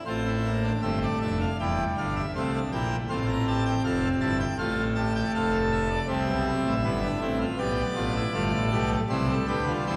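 Classical baroque-style four-part fugue for full pipe organ in F major, elegant and lively at a steady 80 BPM in 4/4, cut from a longer piece and tuned to A4 = 443 Hz. The solo organ plays from 0.0 to 10.0 seconds, its majestic, brilliant baroque voicing crowned by mixtures and a crisp chiff, spanning E1 to Bb5 as the harmony moves from F through C7/E and G7 to rest on C. A wet church reverb of 2.8 seconds places the listener further back in the room.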